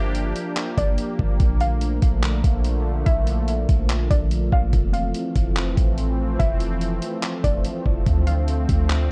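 Hazy and ethereal, this short cut from a longer atmospheric cloud-rap track moves at 144 BPM in 4/4 with a half-time feel, set in a dark, warm production with digital ambience. An airy, detuned sawtooth pad with chorus and sidechain pumping holds sustained chords through Gm7, Bbmaj7, Fmaj7 and Dm7, while a warbling, lo-fi pluck carries the melody high above it, treated with chorus and tape echo. Underneath, a clean 808-style bass supplies a deep, boomy sine-tone low end with a fast attack that decays. A pitched-down, sampler-style trip hop kit, compressed and muffled with a thumpy kick, handclaps and hi-hat, sits up front from 0.1 seconds onward. A barely audible electronic downlifter lingers in the opening 1.4 seconds.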